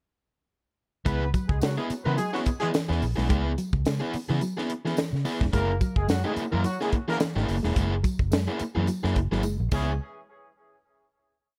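A cool, sly funk groove at 107 BPM in C# dorian kicks off at 1.1 seconds, with a tight, dry drum kit up front laying down a syncopated pattern with ghost notes, its high-tuned snare and tight kick cutting through, while a round, punchy muted bass plays a syncopated riff anchored on the downbeat, dotted with muted ghost notes. A crunchy overdriven guitar sits forward in the mix with clipped, picked chords, and a dark, clean fingered guitar in the background adds a muted single-note line touched by spring reverb. A distant, roomy horn section with light vibrato plays short riffs through an analog delay, and a jingly, bright tambourine marks the backbeat from the rear of a small room. The harmony moves from C#m7 to F#9 with a 16th-note swing, and a drum fill at 9.4 seconds leads into a final hit at 10.0 seconds that rings out to the end of this short, complete piece.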